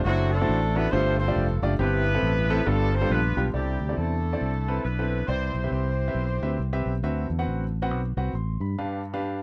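A dry, close studio sound with a 1970s character frames this short slice of uptempo gospel, soulful and hopeful, with a swung 4/4 lilt. A mellow horn section carries the melody in jazz-style ensemble voicing with octave doubling and vibrato, set in a roomy, slightly distant space until it drops out at 6.8 seconds. Underneath, a fingered electric bass lays down a dark, round, punchy foundation that sounds amped and direct, holding on until 8.7 seconds. A clear, intimate grand piano supplies the accompaniment, its natural tone near enough that the action noise of the keys can be heard, and it plays on alone to the end at 9.4 seconds. The harmony moves through rich extended chords such as D9/F#, G9sus4 and C69 before settling on G7.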